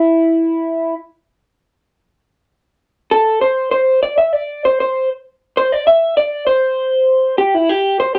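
An electric guitar played through a small old amp carries this short indie pop excerpt on its own, heard as a solo from 0.0 to 8.2 seconds. Its picked tone is slightly broken-up and lo-fi, compressed and placed up front, with an analog chorus and a warbly pitch drift that give it a hazy, mellow character. The line moves within a range from E4 to E5. The tempo sits at 98 BPM in a straight 4/4 feel. A moderate studio ambience with a short half-second decay surrounds the guitar, and the clip is cut from a longer piece.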